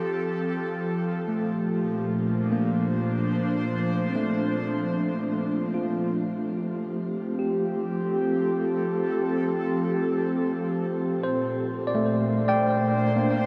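Peaceful and serene, this short ambient excerpt in F major drifts at 73 BPM in 3/4, with an airy, breathy, up-front pad holding sustained chorused chords that alternate between Fadd9 and Bbadd9, while a clean tine electric piano enters at 1.3 seconds with arpeggios carried on tape echo and shimmer reverb, all set in a huge, wet reverberant space.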